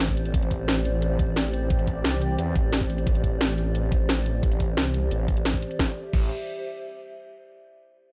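Dry and tightly produced with little reverb, this dark technical drum and bass cut in A minor at 176 BPM feels mechanical and aggressive: a snarling, detuned sawtooth bass growls up front with distortion and sidechain pumping; overdriven drums bring a cracking snare, bright hats and crash cymbal; a knocking, tape-tinged electronic kick enters at 0.1 seconds; a resonant, evolving pad sustains chorused chords; and a warbly, nostalgic lo-fi pad with its own reverb lingers above until 7.1 seconds.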